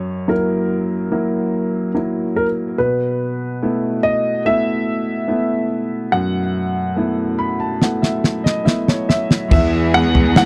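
A concert grand piano carries the melody of this heartfelt, hopeful pop ballad, its intimate tone showing audible action noise and a deep bass, touched by tape echo. Beneath it, a woody upright piano with long sustain plays the accompaniment at a steady 72 BPM in a straight 4/4, moving from F#7 to B7sus4 and adding a fill from 7.0 seconds. A damped 1970s acoustic drum kit enters at 7.8 seconds with a fill of its own, its fat snare, tight kick, dark cymbals and toms sitting up front. At 9.5 seconds the harmony arrives on E as a lush, distant string section sustains chords in the background and an earthy cello section holds the bass with light vibrato. The dry, close 1970s-style studio sound carries light reverb, and this short piece is cut from a longer one.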